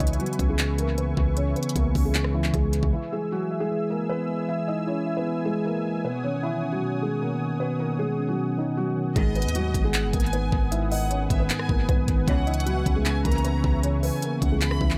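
A knocking, up-front trap drum kit and a punchy, heavy 808-style bass drive this melancholic, hard-hitting hip hop excerpt at 154 BPM in a half-time feel, dropping out at 2.9 seconds and returning at 9.2 seconds. Throughout, a soft, felt-muted upright piano carries the dark, intimate melody in tape echo over a clean tine electric piano and a smooth, detuned analog pad with chorus, moving through chords from C#m7 to E, Badd9 and G#m7. From 9.2 seconds, a lush, distant violin section adds an expressive second line with vibrato and tape echo, while a symphonic string section in the background delivers brief bowed stabs, all within an echo-heavy studio ambience.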